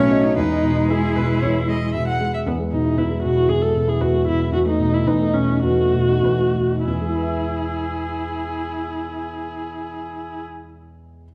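Heard in a reverberant recital hall, this spirited, graceful excerpt of a quick classical-period piano quartet movement in E major moves at 93-117 BPM with rubato, slowing between 1.4 and 6.9 seconds, as a distant, warm violin sings the expressive melody with vibrato and portamento over a dark, up-front viola and a mellow concert grand with deep bass, while a clear, focused cello adds a close second line that stops at 2.2 seconds.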